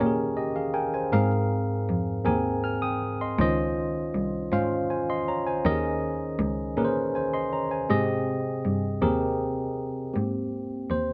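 A worn, slightly out-of-tune tine electric piano sits up front in this slow gospel passage, its lightly overdriven tone heard through built-in speakers and opening with a brief fill in the first 1.1 seconds. Beneath it, a single bowed cello carries the bass line with a rich, soft-attacked sound, shaping its notes with vibrato and expressive portamento. The music moves in an unhurried 6/8 with a straight feel, and its mood is hopeful and uplifting. The harmony drifts from Eb7sus4 through Ab69 and Dbmaj9 back to Eb7sus4 before settling on Abmaj7, giving the gospel voicings a gentle sense of lift. A moderate echo chamber reverb surrounds both parts, and the passage is cut from a longer piece.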